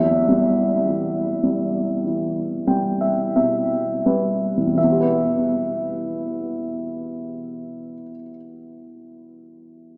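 In a free, rubato 4/4 that slows through its opening seconds, this reflective, wistful classical excerpt features a dark, woody upright piano playing alone and up front from E2 to G5 over an E minor chord, adding a fill from 2.0 to 4.8 seconds before moving into a new section at 4.8 seconds, all heard through a small speaker sound bathed in the long, wet reverb of a vast cathedral.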